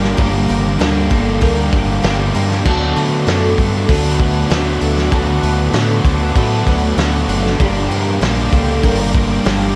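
A dark, reverb-soaked studio sound wraps this short, blissful and hazy stretch of shoegaze-leaning dream pop rock, moving at 97 BPM in a straight 4/4 in D major, cut from a longer piece. Up front, a loose indie drum kit plays throughout with a fat snare, punchy kick, dark cymbals and a gritty, saturated tone, while a growling fingered electric bass with overdrive adds a punchy low end. Three guitars play riffs together: a bright, double-tracked distorted electric guitar, and further back an overdriven semi-hollow guitar with analog chorus and a slightly broken-up guitar through a small old amp bathed in reverse reverb. Behind them, a shimmering, octave-doubled twelve-string acoustic guitar picks arpeggios through ensemble chorus and analog delay, and a very quiet, pure organ-like pad holds evolving, detuned sustained chords with a slow attack. The harmony moves from Gm to D6 at 2.6 seconds and returns to Gm at 7.6 seconds, with the parts playing together for the full length.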